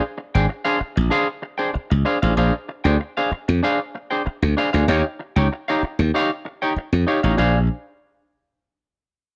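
A dry, close-sounding funk fragment at 96 BPM in Bb mixolydian has a gritty, playful mood, with a clean, picked semi-hollow electric guitar bathed in lush chorus comping rootless Bb9 harmony over a growly, punchy slap bass that sits slightly louder up front, both shifting to Eb9 at 4.9 seconds and returning to Bb9 at 7.4 seconds before the guitar drops out at 7.6 seconds in this cut from a longer piece.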